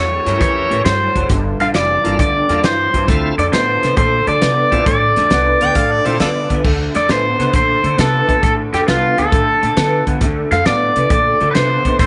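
A bright, overdriven garage guitar carries the melody up front in this brooding, soulful electric blues shuffle at 135 BPM in D minor, set over a slightly broken-up, lo-fi riff from a second electric guitar through a small old amp with ensemble chorus, a woody pizzicato upright bass, a natural country drum kit with a fat snare and punchy kick, a shouting tonewheel organ on a slow rotary speaker that plays until 6.2 s, and a brief jazz-style harmonica turn with tongue slaps and scooped notes between 5.6 and 6.6 s, all heard in a lightly reverberant room.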